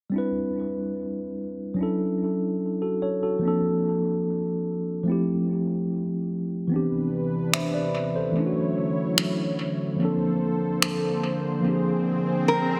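Contemporary R&B at 73 BPM in C major, tender and smooth, opens with a mellow tine electric piano carrying delayed chords through Cmaj9, Dmaj9, Bbmaj9 and Fmaj9, joined at 6.7 seconds by an airy, detuned analog pad with chorus, then by overdriven electronic finger snaps with delay, before an electronic swell and a brief nasal, metallic resonator slide guitar note at 12.5 seconds close this fragment in an echo-heavy chamber reverb.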